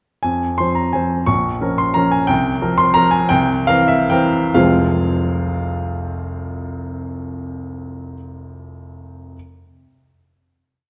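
A dark, warm production places a clear, polished baby grand piano up front inside a concert hall whose reverb lingers for about 1.9 seconds. This brief classical piano waltz in F minor moves in 3/4 with a rubato feel, its tempo ranging between 128 and 191 BPM, and it carries a wistful, elegant mood. The solo piano sets a single-line melody over a waltz bass, spanning from F1 up to Db6. The harmony moves from F minor through B-flat minor to C7sus4 and C7, and the playing slows from 1.8 seconds to 4.6 seconds. At 4.6 seconds the piece settles on a final F minor chord that rings in the hall until the piano stops at 9.4 seconds.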